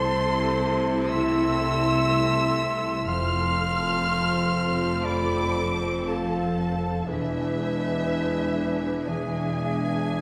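Rubato in 4/4, this cinematic, emotional film score passage, cut from a longer piece, feels longing and sorrowful, with an expressive chamber violin section carrying the melody in soft-attacked vibrato alongside a lush, focused symphonic violin section, a close-miked clear clarinet and an airy, hollow concert flute as second lines. A smooth viola section sits in the background, a French horn section holds warm sustained chords, a very quiet, ringing concert harp plays thumb-plucked arpeggios, and a distant double bass section joins a rich cello section on the bass. The harmony moves from C6 to F at 3.1 seconds and on to E7 at 7.1 seconds, set within a wet recital hall reverb.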